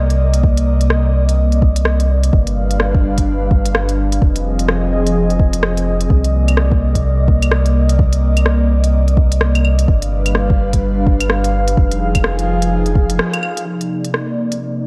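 An airy, breathy pad opens this melancholic, rainy future garage passage, holding slow-attack chords thick with chorus, detuning and a hiss of noise, while its sidechain pumping makes it breathe against the beat. A deep, round sub bass sits up front beneath it, mellow and sine-like. Almost at once a soft electronic kick and an organic electronic kit of claves, rim clicks and crisp hi-hats set up a swung garage groove in common time, as the harmony drifts through minor ninth, dominant and minor seventh colours. At 13.2 seconds the band hits an accent and drops into a short break. From 13.7 seconds the pad carries on with a filter sweep over the kit's lingering claves, hats and rim clicks, settling into a light digital ambience as this section, cut from a longer piece, closes.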